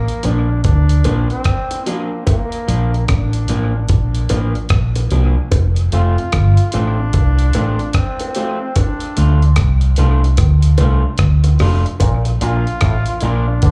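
Round, punchy foam-muted electric bass sits up front in this sunny, uplifting roots reggae excerpt at 74 BPM in Bb major, with a gritty sampler-style drum kit of thumpy kick, hi-hat and rim click, a dark, slightly broken-up picked guitar through a small old amp, and tight, high-tuned bongos in the background. A clear, distant trombone carries the melody with light vibrato and scooped notes, its dub and slapback echoes sharing the roomy feel of a live club gig heard through the venue's PA. The chords move from Bb through F and Dm back to Bb, and at 12.0 s a bright, twangy auto-wah clav joins with an overdriven riff.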